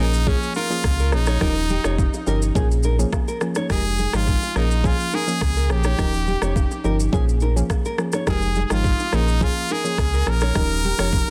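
Afrobeats at 105 BPM in Bb dorian, mellow and sultry, where a brilliant, close-miked trumpet with vibrato and tape echo carries the melody over a soft, round, chorused pluck, a fingerpicked nylon-string guitar riff sitting in the background with tape echo, a deep sub bass with octave up front, a knocking electronic afro-pop kit of kick, rim click and shaker, and very quiet congas and bongos, all cycling through Bbm7, Eb9 and Fm9 in a dense, heavily limited small-room mix.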